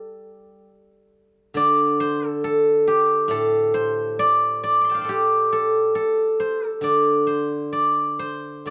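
In a free, rubato pulse around 68 BPM in 4/4, this elegant, contemplative fragment of Chinese traditional music, cut from a longer piece, features a solo steel-string zither played with fingerpicks in the D yu mode, its silvery, ringing tones spanning A2 to D6 and sitting up front in a close, detailed recording with light reverb.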